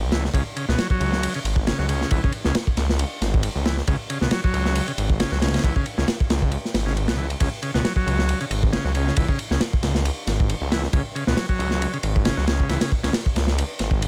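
This raw, funky breakbeat sits in a small room ambience, with the drums and bass placed up front. Cut from a longer piece, it moves at 136 BPM in 4/4 with a light swing on the sixteenths, resting on a single C# minor chord throughout. A crunchy acoustic breakbeat kit plays kick, snare and ride from 0.1 seconds; its tight kick, medium-tuned snare and dark cymbals have a smooth, rolled-off top. Beneath it, a thick, menacing detuned saw bass with a beating, tube-saturated tone holds the low end between G#1 and C#2 until the close at 14.1 seconds. A vintage, buzzy combo organ with light vibrato plays a clean riff between B2 and F#3, trailed by dub echo, before it stops at 13.1 seconds.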